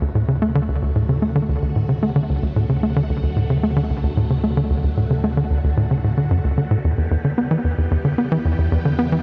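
Ambient music with a luminous, cosmic mood, in which a punchy, up-front sawtooth sequencer bass riff with tape echo and shimmer reverb drives beneath a swirling, vintage string machine that fades in across the full 9.2 seconds through phaser and ensemble chorus, while an evolving pulse-width analog drone with chorus sits low and the harmony moves from D to E minor at 6.8 seconds, all captured on cassette tape with light reverb.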